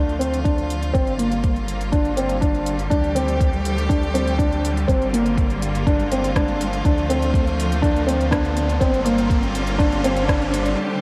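A dark, warm production bathed in a moderate, huge ambient reverb frames this intimate, cinematic piano and strings electronica excerpt, which unfolds as one long build-up. A soft, felt-muted upright piano sits up front with a mellow riff through tape echo and shimmer reverb, over bright, biting chamber strings holding sustained chords with sidechain pumping and shimmer, a rumbling, detuned saw bass that also pumps, and a layered electronic kick. Smooth high-passed hi-hats and rim clicks from a deep house kit sit low in the mix, while a background riser runs from 1.8 s up to the break at 10.8 s.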